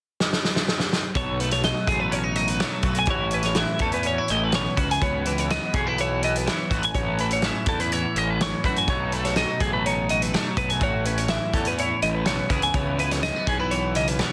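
Wistful and playful, this math rock and midwest emo excerpt moves at 124 BPM in A lydian, opening with a drum fill on a mid-forward loose indie kit whose punchy kick, medium-tuned snare with soft clipping and rolled-off top sit up front in a studio room. At 1.2 seconds two bright, twangy twelve-string electric guitars arrive together, one carrying picked accompaniment through analog chorus and the other picking high arpeggios, while a growly fuzz bass with overdrive joins underneath. The parts circle through B7, A69 and C#m7 under light reverb and a dense, heavily limited modern master.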